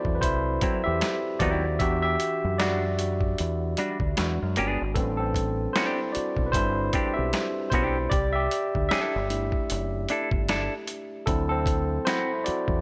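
R&B and neo-soul groove at 76 BPM in 4/4 with a swung sixteenth feel, set in A dorian and carrying a soulful, smooth mood through this short cut from a longer piece. A barky tine electric piano takes the lead from the start, bright and lightly overdriven through a combo amp and sitting up front as it moves through D9, Em9, E7, Am11 and a rootless C69 before returning to D9. Beneath it, a boom bap sampler-style drum kit supplies a pitched-down, gritty pulse with a thumpy kick, high-tuned snare and hi-hat, compressed and placed close. A deep dub fingered electric bass enters at 0.1 seconds with a dark, round, punchy tone, direct and amped in the low register. A clean, compressed semi-hollow electric guitar adds a fingered second line from 0.6 to 12.3 seconds, its hollow-body character touched with slapback echo, while light reverb gives the whole mix a modest sense of space.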